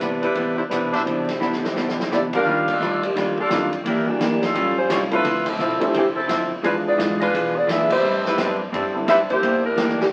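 Joyful and energetic, this brief cut from a longer big band swing piece races along at 172 BPM, with a mellow, up-front saxophone section carrying the melody while a bright trumpet section punches out stabs from 0.9 to 2.8 seconds. A dark, clean hollow-body electric guitar and a grand piano with audible action noise fill in the harmony, moving from Cmaj9 through Ebmaj9, A7alt and E7b9 to Am11 and on to Em7b5. A woody, growly upright bass sits in the background, and the drum kit, with its punchy kick, drives the swing with a fill and band accents, all heard through the crackle of a very old 78 rpm record.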